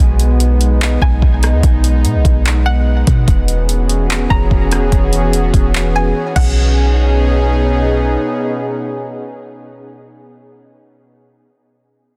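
An airy, breathy pad with chorus and sidechain pumping holds sustained chords over a deep, round 808-style bass in this dreamy, floating cloud-rap excerpt at 146 BPM in a half-time feel in B major, joined at 0.2 s by an overdriven, produced R&B drum kit of soft kick, handclaps, rim clicks, hi-hat and crash, while a twangy, string-like resonator pluck with chorus and digital delay sits in the background, the mix set in a digital ambience with a dense, heavily limited master and a brief silent gap at 6.2 s before the pad returns with the bass and pluck, sustaining on to 10.0 s.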